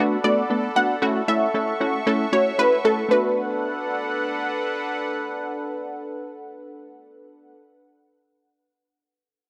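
A dry, gritty recording with light reverb frames this bittersweet yet confident pop excerpt in B minor, moving at 115 BPM in a straight 4/4 over Bm7 and F#m7/A chords. A punchy, nasal chord stab built from detuned sawtooth and pulse waves sits up front with a fast, decaying filter pluck and chorus, while a bright, evolving resonant pad sweeps in with a slow attack, filter swell and long release. Between 0.2 and 4.6 seconds a round, warm analog pluck with a noise layer carries the melody through chorus and tape echo, and the harmony returns to Bm7 as a new section begins at 3.1 seconds.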